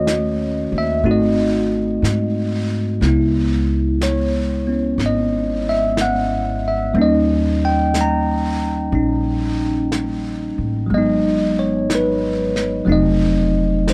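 A bell-like tine electric piano sits up front in this intimate, smoky jazz ballad, its bright, clean tone coloured by a phaser as it carries the accompaniment across a range from D#3 to A#5. Beneath it, a pizzicato upright bass with steel strings gives a woody low end, moving between F1 and G#2. A vintage brush drum kit, entering at 0.1 seconds and sitting well back in the mix, brings a medium-tuned snare and hi-hat with a rolled-off top and the breathing feel of a small, pumping room. The tempo is a slow 61 BPM in 4/4 with a gentle swing on the eighth notes, in G# minor with tuning set to A4 = 435 Hz. The harmony moves through D#m7b5, G#7b9, C#m7, D#7 and G#m7 before landing on F7b9, and with little reverb the sound stays close and dry in this short cut from a longer piece.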